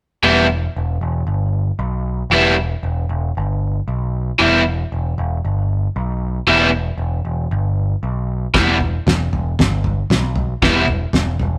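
A bright, double-tracked overdriven electric guitar riff drives this menacing, raw garage rock excerpt in a straight 4/4, joined by a growling, overdriven picked bass, while a cloth-damped, thuddy drum kit with a fat snare, tight kick, toms and a rolled-off top enters only at 8.5 seconds, all captured as a band playing live in one room with light reverb.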